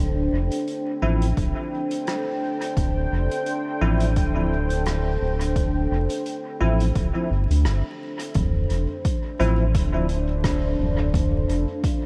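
A swung 86 BPM groove in 4/4 drives this spacious, deep ambient dub in D minor, with a punchy, overdriven electronic kick entering at 1.4 seconds beneath a distant, roomy soft-mallet kit of hi-hat, rim click and toms sent through dub echo. A round, dark analog bass sits up front with a moody, evolving pad holding a Dm9 chord, its detuned unison tone thickened by chorus and its own reverb, while a bell-like tine electric piano adds clean, bright stabs through analog chorus and dub echo. The dreamy mix is soaked in a huge ambient reverb and dusted with vinyl crackle, and this section of a longer piece shifts into a new passage at 8.4 seconds.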